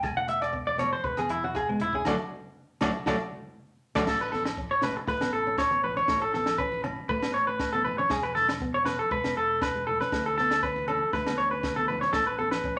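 A bright, twangy electric guitar through a small old amp sits up front, its picked arpeggios slightly broken-up and compressed, taking a clean solo over the opening 4.1 seconds while the band hits an accent from 2.1 seconds, in this danceable, warm highlife groove at 119 BPM in A major. Underneath, a fingerpicked classical nylon-string guitar plays chords moving through E, D and Aadd9. A punchy fingered electric bass, a dry compact cocktail kit with dark cymbals and a high-tuned snare, ringing agogo bells and soft-handed, thin-skinned congas heard distant in a large room fill out the background, all set in a wet studio reverb in this excerpt cut from a longer piece.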